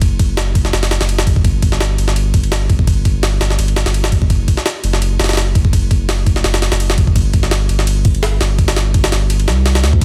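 The recording has a dense, heavily limited modern master with vinyl crackle and little room ambience, setting an atmospheric, nostalgic tone. This drum and bass and jungle passage, cut from a longer piece, sits entirely in a drop that runs from 0.0 to 10.0 seconds, with a light swing on the sixteenths. A sampler-style jungle drum kit sits up front, compressed and pitched up, with a thumpy kick, a high-tuned snare, ride and crash cymbals, a gritty, tape-warm character and a touch of studio reverb. Beneath it, a saturated sub bass carries the low end from F#1 to D2, a deep, thick sine tone with a fast attack and long sustain, pushed forward and given extra body by tube saturation. Both parts play throughout, so the drums and the heavy sub pressure fill the whole passage.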